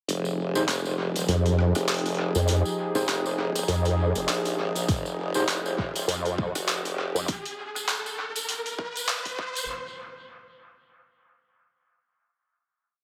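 Swaggering and gritty, this complete glitch hop piece in F minor at 100 BPM with a swung feel is one long build over a filter sweep, where a warbling detuned analog pad, a pair of up-front wobble basses (one sawtooth-edged, one nasal and resonant), a pitched-down boom bap sampler kit of rim, closed hat and clap drenched in dub echo, jingly hand-played tambourine sixteenths, very quiet barky electric piano stabs through a combo amp, a riser from 3.2 seconds and a punchy layered electronic kick from 4.9 seconds gather in an echo-heavy mix with plate reverb.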